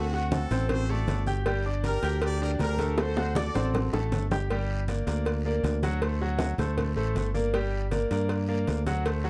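Driving and passionate, this brief salsa fragment in G harmonic minor runs at 158 BPM, with a punchy horn section carrying the melody with light vibrato until 4.1 seconds over an up-front, polished grand piano whose action noise is audible, a round, dark fingered electric bass, damped low-tuned congas in the background, tight high-tuned cowbell and bongos, and a raspy guiro tucked behind, all in a moderate studio ambience with a drum fill from 3.0 to 4.5 seconds leading into the second section over alternating D7 and Gm chords.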